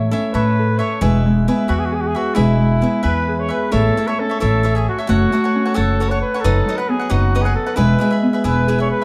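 In a warm, dark production with moderate recital hall reverb, this festive, proud piece of mariachi-style Mexican folk moves at 89 BPM in 6/8, starting in E major and shifting to A major at 3.7 s. A distant, roomy solo trumpet carries the melody in classical style with light vibrato. Beneath it sit ringing, fingerpicked Celtic harp arpeggios, a crisp, picked cavaquinho accompaniment and a growly, woody pizzicato upright bass placed up front.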